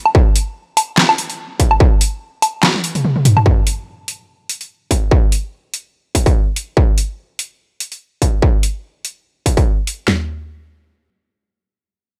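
A swung, half-time groove drives this chaotic, menacing dubstep excerpt, where two up-front electronic drum kits play together in a dry room: one, tape-warm, carries a distorted kick, a huge snare, handclaps and toms, while the other, overdriven, adds a deep snare, bright hi-hats, handclaps, toms and woodblock, opening on a drop whose kick falls away for a drum fill from 2.6 to 3.5 seconds before both kits stop at around 10 seconds.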